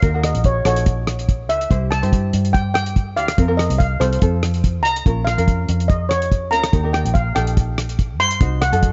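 A shimmering, airy steel pan played with medium rubber sticks carries the melody up front, touched with slapback echo, in this driving, dramatic calypso excerpt at 143 BPM with a light sixteenth-note swing. A mellow, fingerpicked ukulele fills in the accompaniment while a growly, punchy foam-muted electric bass and a cloth-damped, thuddy drum kit with a tight kick, hi-hat and rim click push the groove from the front of the mix. The chords move from Ebm7 through C, Fsus4 and F to Bbm and Eb before landing on Cdim at 8.4 seconds, all in a dark-topped studio reverb with a slightly flat tuning.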